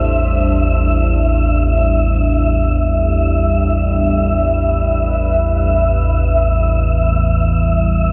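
A deep, rumbling drone sits up front in this dark ambient excerpt, its ominous, wave-folded tone holding low between A1 and E2 while a filter sweep slowly reshapes it across the full 8.1 seconds. Beneath and around it, a moody, detuned pad with a sub octave sustains a Cadd9/A chord from A2 to E5, its chorus-thickened sound fading out over the course of the passage. An airy, breathy noise texture tuned to E5 hovers like wind, also placed close and sounding mellow. The piece moves in free time, and the mood is desolate and unsettling. Everything is bathed in a huge, wet reverb with a 7.8 second decay, and a worn cassette-tape character adds a warbling pitch drift to the whole recording, which is cut from a longer piece.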